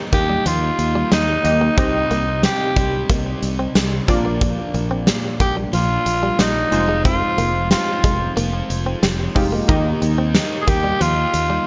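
Nostalgic and moody, this 1980s-style pop excerpt puts a raspy, gritty tenor saxophone melody up front beside a huge arena drum kit with punchy kick, snare, hi-hat and tambourine, supported by a fretless electric bass, background analog keys with a detuned sawtooth tone and filter sweep, a twangy, clean direct-recorded electric guitar riff with subtle chorus and delay, and a crunchy overdriven guitar in lush chorus, set in a small room with light reverb and a rolled-off top end as the chords move from Eb through Cm, Bb and Fm7 back to Eb.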